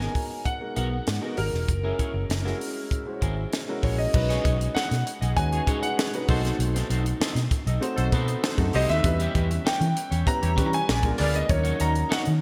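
Upbeat and glossy, this fragment of polished 1980s jazz-funk pop moves in a straight 4/4 over rich chords such as G#m9, B7b9 and A#7b9. A clear, intimate grand piano carries the melody with its action noise audible beneath an analog chorus, while a second grand piano of natural tone supplies accompaniment through a subtle chorus. An electric guitar at the edge of break-up, twangy and fingered, plays a riff bathed in lush chorus, and a dark, round, foam-muted fingered bass sits up front with punchy weight. The crisp fusion drum kit, airy and polished with a high-tuned snare, drives with crash, hi-hat, kick and snare through gated reverb. At 5.5 s a mellow horn section with light vibrato and soft attack enters in the background as a second line with digital delay, dropping out at 11.4 s, and the recording sits in a moderate, lush hall reverb with bright 1980s-style digital production.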